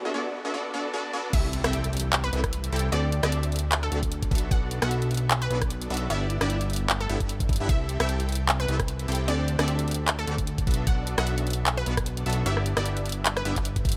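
A punchy, detuned supersaw stab opens this euphoric future bass cut alone, its lush chorus, gritty 12-bit sampler texture and sidechain pumping carrying a short build-up in C lydian at 151 BPM with a half-time, lightly swung feel. At 1.3 seconds the drop lands with a very quiet impact, as a knocking, up-front electronic kick, a tape-toned trap kit with bright hats, claps, rim clicks and crash, and a fat, tube-saturated analog bass enter, pumping under the riff. A bright, decaying unison pluck carries the melody with delay and sidechain pumping over chords moving through Bm7, C6, D7sus4 and G6, all set in light digital ambience.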